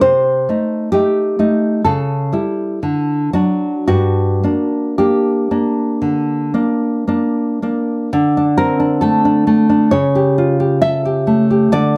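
A wet studio reverb surrounds a full-bodied, up-front nylon-string guitar in this short romantic passage cut from a longer piece for solo classical guitar. Fingerpicked in a passionate, wistful rubato at 54-68 BPM in 4/4, it moves from G minor through diminished and dominant seventh harmonies before settling on G minor at 3.9 seconds. At 8.1 seconds the music shifts to D minor, with a bare D5 chord and then A7/C#, the guitar spanning G2 to E5 throughout.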